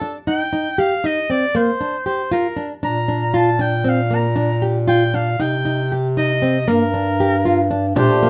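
A pulsing, uneven 5/8 meter with a straight feel drives this short excerpt of contemporary chamber music, its mood shimmering and restless over a light reverb. A clear soprano saxophone carries the melody from the start, its jazz-style vibrato sounding distant and roomy, while a dark nylon-string guitar fingerpicks classical arpeggios close up, a finger squeak audible under the notes. At 2.8 seconds a bass clarinet enters with a soft attack, giving the bass line a warm, present weight as the harmony moves through C minor, G minor and B-flat. Near the end a reedy, breathing pedal harmonium adds full, dry sustained chords at 7.9 seconds. A smooth bowed viola offers a brief second line, and a small, bright frame drum taps softly in the background before the clip breaks off.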